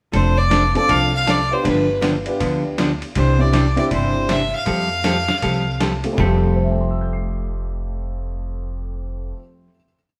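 This is a short, complete western swing number in country style, cheerful and playful, swinging at 159 BPM in F major. A biting, earthy fiddle carries a motif-based melody built from sentence-like phrases, bowed with light vibrato, and drops out at 5.8 seconds. Beneath it, a hollow-body archtop guitar picks a clean four-to-the-bar rhythm while a woody pizzicato upright bass plays a two-beat root-and-fifth line. A dusty, sampler-style drum kit adds gritty, compressed texture with a thumpy kick, a snare backbeat and a ride cymbal pattern. A mellow upright piano joins at 0.7 seconds with syncopated, close-voiced comping. The band plays live in a stone room, moving through F6, G7 and Cadd9 to a final Fadd9 chord that the piano sustains until 10.2 seconds.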